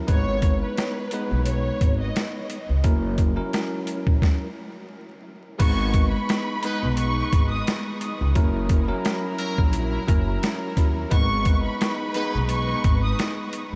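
A swung, sampler-style boom-bap groove of gritty, pitched-down drums and a woody pizzicato upright bass drives this reflective, dark hip-hop excerpt, where a bell-like tine electric piano comps beneath an expressive, vibrato-rich violin section carrying the melody through analog delay; the groove halts for a stop at 4.2 seconds, then from 5.6 seconds a reedy studio string section adds sustained chords and a very quiet, punchy trumpet section stabs in at 6.7 seconds, the whole mix soaked in huge, dreamy reverb and vinyl crackle.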